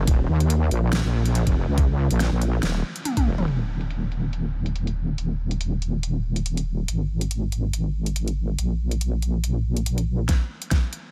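A dry, up-front mix drops straight into menacing, aggressive heavy wobble dubstep at 141 BPM, felt in half-time with a swung sixteenth pulse. A heavy, detuned sawtooth wobble bass with chorus and overdrive wobbles between Eb1 and Eb2, while an overdriven, knocking electronic kick hits until 3.2 seconds and returns briefly near the end, and a layered dubstep kit of hi-hat, huge snare and toms sits filtered beneath. Drum fills at 3.1 and 10.3 seconds bracket a long filter sweep on the drums.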